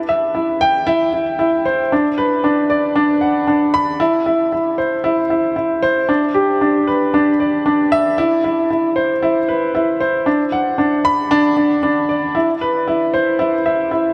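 Bathed in a huge ambient reverb with a 5.3-second tail, this hypnotic, melancholic electronica fragment at 115 BPM in 4/4 features a lone grand piano, clear and intimate with audible action noise and long sustain, sitting up front between D4 and B5 and tuned to A4 = 442 Hz, playing from 0.1 to 14.1 seconds in a passage cut from a longer piece.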